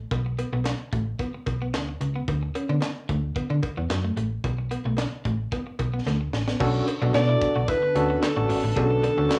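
A snappy, metallic slap-like FM bass sits up front in this early-eighties boogie funk cut, driving a funky, late-night groove in B minor at 111 BPM in a straight 4/4. Beneath it, a tight, acoustic drum kit with a high-tuned snare, handclaps, hi-hat and crash carries a faint cassette tape grain. A cowbell clanks in the background, and an electric guitar at the edge of break-up picks a riff through analog chorus. The harmony moves from Bm7 to D to B7(no3). After a drum fill, the section turns at 6.6 seconds, where a barky, gritty electric piano with medium tremolo and plate reverb arrives alongside a lush, warbling unison pad of detuned sawtooth and square waves. From 7.1 seconds a breathy alto saxophone takes the melody up front, with light vibrato, subtone and scooped notes in a jazz style, wrapped in plate reverb and analog delay. The whole short excerpt has the intimate, lightly reverberant feel of a home cassette recording.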